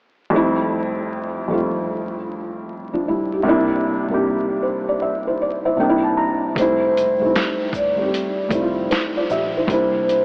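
Dreamy throughout, the mix is soaked in a huge ambient reverb, with vinyl crackle and an AM radio tint over it all. This mellow, cosy lo-fi hip hop excerpt, cut from a longer piece, moves at 77 BPM in 4/4 with a swung sixteenth feel in F major. A felt-muted upright piano sits up front from the start, soft and intimate with audible action noise and short sustain, its tone dulled by cassette tape and a low-pass filter as it moves between Fmaj9 and C7 and plays a fill from 4.2 seconds. At 6.6 seconds a vibraphone with soft mallets enters with a metallic, airy melody and slow motor vibrato, while a sampler-style drum kit brings a gritty, thumpy kick, a medium-tuned snare, hi-hat and shaker. Underneath, a vintage foam-muted electric bass stays round and dark in the background.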